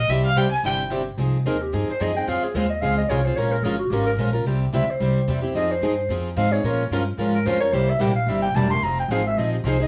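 Moderate studio reverb gives this fiery, swinging acoustic string swing in the jazz manouche style a studio ambience, cut from a longer piece. A bowed violin with vibrato and portamento opens the melody until 0.7 s, then from 1.5 s a growling, raspy clarinet with subtone and scooped notes takes the solo over chords moving through Fm7, Dbmaj7, Bbm7 and C7. Underneath, a woody, thumpy pizzicato upright bass on gut strings and two bright, boxy picked acoustic guitars, one a plugged-in archtop, carry the accompaniment with audible finger squeak.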